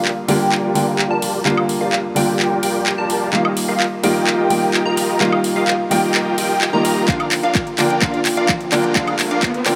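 A clear, up-front concert grand piano carries the chords through this emotional, euphoric festival progressive house build-up at 128 BPM in G minor, moving from Gm7 to Ebadd9 to Bb, pumping with the sidechain and trailed by tape echo. Around it, a bright, catchy plucky lead spins phased, gritty arpeggios high above, while a huge, thick supersaw riff rides a filter sweep and a house kit of handclaps, metallic hi-hats and woodblock plays a fill throughout, all bathed in a vast ambient reverb. A punchy layered kick drops in at 7.1 seconds, and a background riser climbs in from 8.2 seconds as this excerpt from a longer piece ends.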